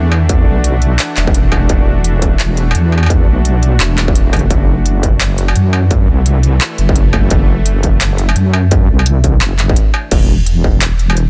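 Dense, heavily limited and dry, this short cut from a longer half-time drum and bass track at 171 BPM sets a tense, cinematic mood in a drop, with a swung 16th feel and chords moving from E5 to F#dim at 4.5 seconds and back to E5. A deep, dark wobble bass with chorus sits up front, while a bright, string-like drone with vibrato and its own reverb pumps beneath it until 10.1 seconds. A distorted electronic kick punches forward alongside an industrial kit of crisp hats, handclaps, crash cymbal and struck metal, both re-recorded in a small room.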